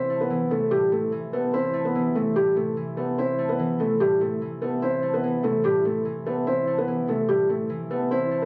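Menacing and brooding, this short half-time hip hop cut in A minor at 146 BPM sets a dark, thick-felt upright piano melody up front over a quieter, ringing concert harp accompaniment, both filtered and heard through the club reverb and small-room ambience of a phone recording, all sitting on a single A minor chord.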